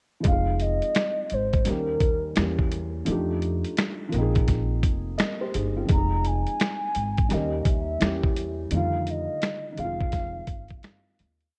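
Reflective and nostalgic, this short lo-fi hip hop piece in F minor moves at 85 BPM in 4/4 with a lazy swing on the sixteenths, and it fades out from 8.7 seconds to its close at 11.5 seconds. A dusty, sampler-style soul drum kit sits up front with a thumpy kick, a medium-tuned snare layered with finger snaps, and hi-hat, playing a slumped, off-grid hip-hop beat that sounds gritty and compressed. Underneath, a felt-muted upright piano holds soft, dark chords with audible action noise and short fills, repeated like a sampled loop and softened by cassette tape and a low-pass filter. Its harmony drifts through Fm7, Eb7, Edim7, F13 and Bb9sus4. An upright bass plucks a sparse, woody, growly line, while a hollow clarinet-like synth lead with a soft attack, vibrato and chorus carries a motif-based melody of call phrases. The whole mix carries a light small-room reverb and the warbling pitch drift of worn old tape.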